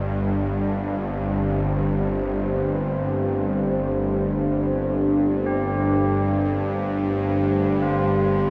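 Vast and ominous, this dark ambient drone drifts in free time over a single Gsus2 chord, heard as a short cut from a longer piece. A bowed-like drone sounds from the very start, low and string-like, tense and bright with a noisy, detuned edge, vibrato and its own reverb, sitting up front in the mix. Tubular bells ring in at the same moment with solemn, metallic arpeggios, mellow and soft from padded hammers, trailing a delay at a lower level. At 0.4 seconds a deep, moody pad joins with sustained chords, its dark sawtooth layers thickened by a sub octave, a moving notch, chorus and built-in reverb. The whole piece sits in a cavernous, cathedral-like space whose long decay stretches every sound into the distance.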